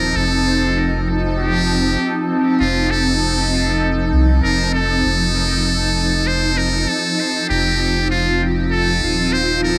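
Ambient dub with a spacious, peaceful mood and a gently swung 4/4 feel, this short cut from a longer piece sets a buzzy, thin metal-muted trumpet melody, close-miked and up front with cassette tape and dub echo, over a cloudy, evolving granular pad holding sustained chords with its own reverb and 12-bit sampler grit, while a deep, round sub bass sits beneath on a single F7 chord, all captured as a home cassette recording in a moderate room.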